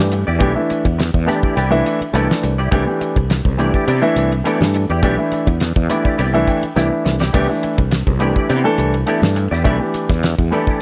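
Electric jazz fusion with a funky, bright mood, this short excerpt cut from a longer piece moves at 104 BPM in 4/4 with a light 16th-note swing, settled on a Cmaj9 chord in C major. A dark, mellow grand piano carries the accompaniment up front, its short-sustain voicing adding fills between 1.0 and 2.7 seconds and again from 6.2 to 7.3 seconds. A fingered, clean semi-hollow electric guitar with a compressed, hollow-body tone and an ensemble chorus plays stabs further back in the mix. The fretless electric bass sits forward with a punchy, direct sound. A damped 70s drum kit, dry and up front, drives things with a fat snare, tight kick, hi-hat, ride and splash cymbal, adding a brief fill from 6.8 to 7.3 seconds. Light reverb and studio ambience frame a dark production.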